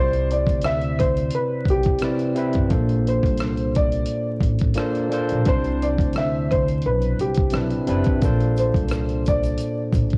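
A gently swung sixteenth-note groove in 4/4 carries this cosy, mellow lo-fi hip hop excerpt, anchored by a gritty, compressed sampler-style drum kit with a thumpy kick, hi-hat and rim click sitting up front, and a woody pizzicato upright bass with tube saturation. A bright, barky tine electric piano plays the accompaniment over chords alternating between Cmaj9 and Bbmaj9, while a soft, intimate felt-muted upright piano carries the melody through cassette tape and tape echo. A grainy egg shaker slips in very quietly at 8.2 seconds, and the whole home-cassette recording sits in a small room with vinyl crackle.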